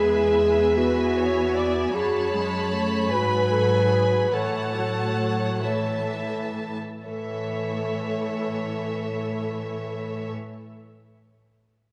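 Uplifting and moving, this brief, rubato cinematic film-score fragment in 6/8 that slows between 0.8 and 7.1 seconds sets a dark, smooth-topped solo clarinet alongside a distant, focused violin section, a lush, even viola section and an up-front cello section carrying the bass. The strings are all bowed with vibrato, and everything is bathed in the wet reverb of a concert hall as the harmony moves from E through F#madd9 to A.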